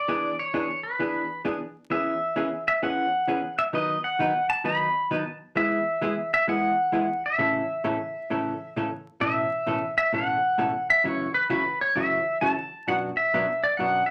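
A twangy, bright pedal steel guitar carries the melody up front, played clean with fingerpicks and slide and shaped by volume swells, in this cheerful, down-home country piece cut from a longer performance. Beneath it, a dark vintage hollow-body jazz guitar picks a clean accompaniment, also up front, as the tune swings along at 131 BPM in A major, stating its opening section twice. A small, reverberant room and a layer of vinyl crackle lend the recording an old-time character.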